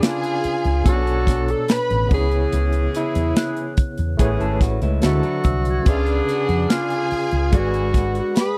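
A dry, close 1970s-style studio sound frames this smooth, cinematic soul excerpt, where a breathy, whispered tenor saxophone carries the melody up front over a lush, bowed violin section, a gritty, overdriven electric piano with fast tremolo, distant horn stabs, a tight funk drum kit, and a round, dark hollow-body bass entering at 0.4 s, while a bell-like celesta rings in the background from 3.4 s and a slightly broken-up electric guitar riff appears briefly at 4.2 s.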